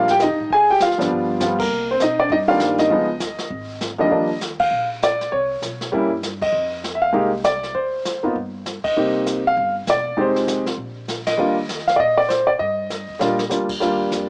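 Jazz piano trio in Eb major, swinging at a brisk 198 BPM with a relaxed, playful mood, heard as an excerpt cut from a longer piece. A smooth, vintage-toned grand piano with deep bass sits up front carrying the melody over a woody, thumpy pizzicato upright bass placed low in the mix, while a brushed drum kit with dark cymbals and a boomy kick joins in band accents and plays a short fill at 12.9 seconds. Piano and drums carry a cassette tape character, and the take has the small-room, small-speaker feel of a home cassette recording.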